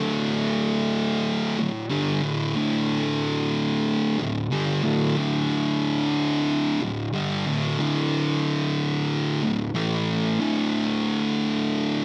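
A thick, bright, double-tracked fuzz guitar plays alone and up front in this brooding, heavy metal excerpt at 92 BPM in 4/4, its picked, distorted power chords sitting low in the register and moving from D5 to A5 at 9.8 seconds before returning to D5 at 10.4 seconds, all set in a moderate large-studio reverb.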